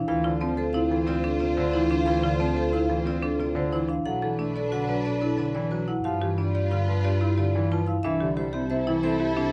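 In a straight 6/4 pulse, this propulsive, bright minimalist classical pattern music sets a metallic, ringing vibraphone melody over woody, percussive marimba arpeggios, with a mellow French horn second line sitting distant in the background. A concert grand piano with deep bass supplies the accompaniment, a lush, bowed violin section holds smooth sustained chords, and a rich, close double bass anchors the low end up front, everything set in a moderate large studio reverb. The harmony moves from Dm7 through Bm7 and G7 before a new section arrives at 8.0 seconds on C6, and the passage is cut from a longer piece.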